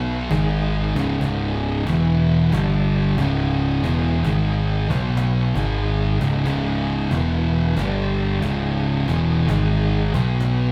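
Stoner and doom metal with a sludgy, brooding mood and a swung 4/4 feel, cut from a longer piece and played live by a band in one room with moderate large-studio reverb. Two thick fuzz guitars carry the riff throughout, one warm and up front, the other dark and in the background, over a growling, overdriven picked bass that sounds direct and amped. A woody, compressed cajon with faint snares enters at 0.3 seconds in the background, while a full, shouting tonewheel organ holds sustained chords through fast rotary speaker and chorus vibrato beneath a progression that circles from C# and E power chords to a C# minor chord.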